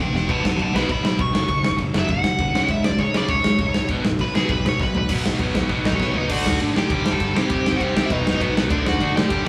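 Punk rock at 200 BPM in a rowdy, rebellious mood, this excerpt opens with a dark, smooth overdriven lead guitar soloing over a picked, double-tracked rhythm guitar riff and a woody pizzicato upright bass sitting in the background, while a big, punchy acoustic drum kit enters at 0.2 seconds with a fill. The solo runs to 5.1 seconds, drum fills around 4.8 and 6.0 seconds mark the shifts into new sections, and the chords move through B, F#5, C#5 and B5 before turning to D, G5 and C5. The band sounds like it is playing live together in a moderate stone room, with the guitars and drums up front.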